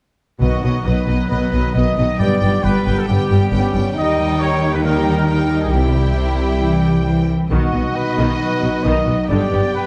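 At 0.4 s a cinematic orchestral tutti opens at 135 BPM in a heroic, adventurous mood, with a very quiet, close timpani note that stops by 1.0 s. Lush, focused violins carry the melody above a background second violin line with expressive portamento, while very quiet, even violas, mellow, distant French horn chords, a ringing harp playing arpeggios and smooth trumpet stabs fill the middle. Distant double basses and vibrato-laden cellos anchor a B, G, D#, C progression, all set in a dark, warm production with moderate recital hall reverb.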